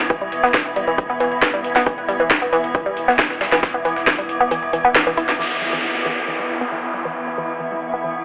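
Heard through a thin, telephone-like filter and soaked in a huge ambient reverb, this dark, hypnotic fragment of driving peak-time techno runs at 136 BPM in a straight 4/4, all pulsing under sidechain pumping on the synths. An up-front woody, wave-folded pluck riff with chorus, overdrive and digital delay rides over a metallic, eerie inharmonic drone, a bright, blurred granular cloud pad and a deep, saturated sub bass in the background. The heavy electronic kick, the cracking snare and smooth hats of an up-front techno kit, and a very quiet, gritty breakbeat sampler kit drive the groove until the kick falls away at 4.2 s, and at 5.4 s the bass and techno kit stop as an up-front downlifter and a filter sweep carry it onward.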